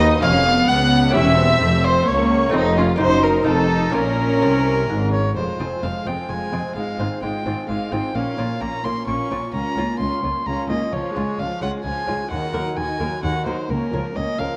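Classical in a baroque-style concerto manner, this dramatic, stormy passage moves at 129 BPM in 3/4, starting in Bb minor before turning to F minor at 5.4 s, and it is cut from a longer piece with solo episodes. A close, warm solo violin carries the melody up front, its gut-string tone nasal and reedy with an airy bow, while a very quiet, dark violin section also carries the melody with a smooth top. A distant studio violin section sits in the background on a second line, and a bright, delicate fingerpicked lute with double gut strings adds accompaniment alongside a viola section whose period-style sound is warm and reedy. Underneath, a rich cello section with a nasal edge and a close, rich double bass section with light vibrato supply the bass. The harmony passes through an Edim7 and F7 before settling into Bbm, then moves through Fm, Db and Ebm in the second part. The whole ensemble sits in moderate stage reverb and carries the worn, warbling pitch drift of old cassette tape.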